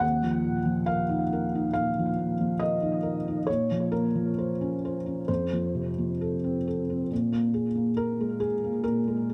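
A felt-muted upright piano plays alone, dark and intimate with thick felt and audible action noise, touched by tape echo and set up front in a dry, closely miked sound, as this wistful, melancholic neoclassical minimalist fragment cut from a longer piece drifts in rubato 4/4 at around 64-71 BPM through Ebmadd9, Bbmadd9 and F before moving to a new passage on Absus2/Bb at 7.1 seconds.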